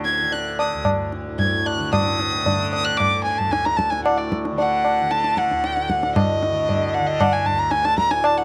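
Meditative and devotional, this short cut from a longer Hindustani classical performance moves at 114 BPM in a straight 4/4 and gradually speeds up over its 8.4 seconds. A single dark violin carries the melody up front, bowed sul tasto with vibrato and a woody tone, ranging from D5 up to G#6. Beneath it, a mellow acoustic tanpura sustains a softly plucked, buzzing drone between D2 and D3, its shimmering resonance sitting quietly in the background. The low-tuned tabla enters at 0.1 seconds, sounding ringing yet close and dry. An opening passage gives way to a second section at 1.9 seconds, and the whole is framed by light reverb and the ambience of a small room.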